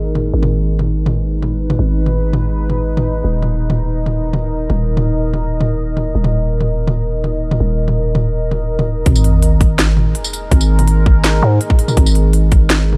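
A growling, buzzy 808-style bass sits up front from the first second, its fast attack and decaying tail driving this tense, spacious half-time drum and bass excerpt cut from a longer piece. Alongside it, a deep, moody ambient pad holds sustained chords throughout, its detuned sawtooth layers thickened with chorus and built-in reverb and breathing with a sidechain pump, moving from G# minor to a D#5 chord. The electronic drum kit comes in at 0.2 seconds with a cracking snare, crisp hats, tambourine and toms, tape-warm and close in a small room. At 9.1 seconds the drop arrives with an impact as a tight, layered electronic kick joins and a sub drop rumbles in the background, the chords returning to G# minor. The production stays dark and dry overall, letting the pad's own reverb supply the sense of space.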